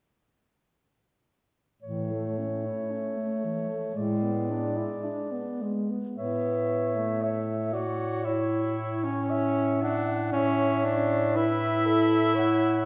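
From 1.8 s a single-reed quartet enters together in a tender, lyrical classical excerpt in A major, drifting in rubato at about 51-60 BPM over a slow 4/4: a smooth-topped clarinet sings the melody above a mellow alto saxophone's vibrato-tinged second line, an up-front tenor saxophone with light vibrato supplies warm accompaniment, and a distant, roomy bass clarinet holds a low A, as the harmony moves from A to a rootless E7/A and settles back on A when a new passage begins at 6.2 s, all carried by the lingering reverb of a recital hall.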